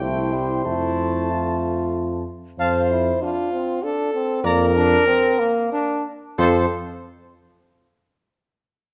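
In a stately triple metre at 94 BPM, the beat stretches and relaxes with rubato, giving this classical brass quintet a noble, unhurried bearing in F major. All five voices sound together from the start until 6.7 s: a mellow trumpet carries the melody with light vibrato, and a warm, distant flugelhorn shades a second line just beneath it. A clear French horn with light vibrato and a vintage-toned euphonium fill in the accompaniment, while a smooth-topped bass trombone anchors the bass; the horn and trombone sit up front. The harmony moves from C to F, settles onto Bb over an F bass at 4.4 s, and lands on F5 at 6.4 s. A generous recital hall reverb surrounds the ensemble, and the soft top end adds to the rounded sound of this passage cut from a longer piece.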